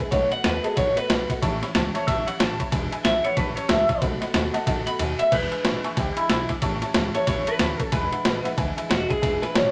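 Swung eighths at 185 BPM in 4/4 drive this upbeat, retro rockabilly excerpt in E mixolydian, where a twangy, slightly broken-up electric guitar through a small old amp carries the phaser-tinged melody as a clean solo until 5.3 seconds, over a full-bodied picked dreadnought acoustic guitar, a jangly, metallic tack piano, a woody, dark pizzicato upright bass on gut strings, and an up-front, gritty, pitched-down boom bap sampler-style kit with a thumpy kick, high-tuned snare, ride and crash, whose kick and snare drop out from 5.0 to 5.3 seconds as the B7, A7 and E7 changes roll on in a moderate studio reverb.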